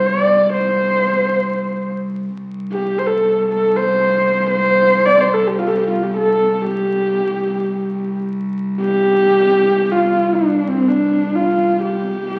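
The sound is that of a very old 78 rpm record, with vinyl crackle running under a wet, large studio reverb. This is a short cut from a longer piece of Mongolian folk music in free time, set in a C zhi mode and tuned to A4 = 439 Hz, and its mood is galloping and proud. A single horsehead fiddle carries the melody up front, its bowed horsehair strings sounding dark, woody and husky, with vibrato and portamento across a range from C4 to D5. Beneath it, one bowed cello holds a low C2 drone at a lower level, rich, smooth and even, with its own vibrato. Both instruments play together from 0.0 to 12.4 seconds, the fiddle close and prominent over the steady foundation of the cello.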